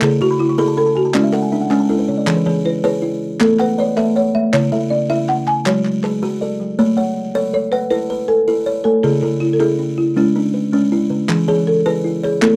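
A close, dry studio sound with a faint mains hum and only light reverb frames this short cut from a longer piece of southern African traditional music, built on an mbira-style interlocking cycle in 12/8 at 106 BPM with a straight feel in A major. A round, airy folk marimba played with soft mallets carries the melody up front, its hardwood bars sounding rustic and mellow. Alongside it, a buzzing kalimba with a dark, smooth fingertip pluck and a second, boxier kalimba pluck short, rippling arpeggios, and a kalimba fill opens the passage until 2.3 seconds. A crisp group handclap keeps time through the first half, drops out at 6.1 seconds and returns at 11.3 seconds. The chords move from C#m through E, A and F#m across both sections, and the mood is warm and rippling.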